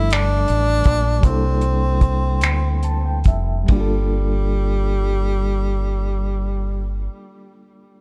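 A dry, close-sounding excerpt of slow, sultry late-night R&B in six-eight at 45-55 BPM in G dorian, where a breathy tenor saxophone with vibrato, scooped notes and delay sings a jazz-style melody over a reedy, lightly overdriven electric piano with fast tremolo that plays a fill from 2.4 to 3.7 seconds as the tempo slows, a deep, round fingered dub bass up front, and a cloth-damped, thuddy drum kit of finger snaps, hi-hat, tight kick and ride cymbal that stops at 3.9 seconds, the harmony moving between Gm9 and C13.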